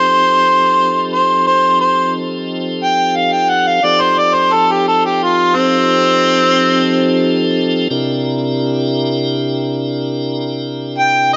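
Swaggering and soulful, this slow blues in 12/8 moves at 59 BPM, an excerpt cut from a longer piece. A mellow harmonica takes a jazz-style solo up front, its soft-attacked, scooped notes carrying light vibrato and a smooth top, roughened by overdrive and tape grit. Alongside it a piping, lightly overdriven tonewheel organ holds sustained chords through a slow rotary speaker, moving from F9 to C9 at 7.9 seconds, all set in a lush hall reverb with the muffled, dark character of a home cassette recording.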